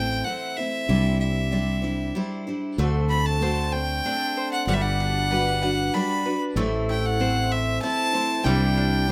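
Acoustic folk in G major at 95 BPM in a gentle, hopeful 3/4, with a clear, earthy fiddle carrying the melody with light vibrato up front, a bright, full-bodied picked steel-string guitar with finger squeak accompanying, a growly, punchy fretless electric bass underneath, and a bowl-back mandolin adding double-string arpeggios from 2.8 seconds, all in light reverb over chords moving from Am through Cadd9, D7 and Gmaj7.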